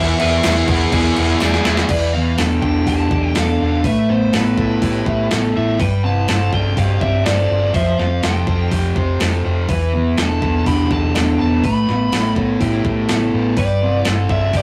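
A hazy, dreamy shoegaze and dream-pop rock passage opens on a dense bank of guitars: a bright, double-tracked overdriven riff up front that drops out at 1.9 s, a raw garage riff, a thick, dark fuzz riff, lo-fi arpeggios from a slightly broken-up small amp in the background, and a fuzz lead melody, all over a round, foam-muted fingered bass. A crisp, thumpy 8-bit drum machine, overdriven and re-recorded in a small room, joins up front at 0.2 s, with a faint jingly tambourine briefly behind it and a drum fill leading into the long second section of suspended chords. The sound is a rough rehearsal-room recording with tube saturation and a wet, short ambience.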